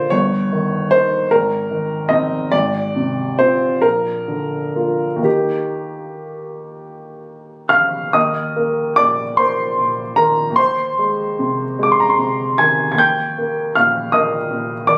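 A classical romantic character piece for solo upright piano, this lyrical and passionate excerpt moves in a rubato 6/8 at 40-53 BPM in E-flat major, its woody, intimate tone sitting up front with audible action noise, captured on a phone in the room with light club reverb and compression, and shifting into a second section at 8.2 seconds before the clip cuts off at 15.0 seconds.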